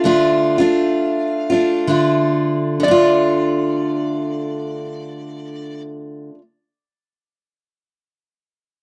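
A lap resonator guitar and a picked steel-string acoustic guitar open together on a D minor chord in this reflective, wistful folk excerpt, set at a slow 62-67 BPM in 4/4 with a gentle swing and easing down over the first 2.8 seconds. The resonator carries the melody high up with a nasal, metallic slide tone, played with fingerpicks, while the acoustic guitar sits up front beneath it, bright and full-bodied like a dreadnought with fresh strings and audible finger squeak. Light reverb touches a dry, close 1970s-style studio sound, and the resonator falls away at 5.8 seconds, just before the acoustic stops at 6.4 seconds.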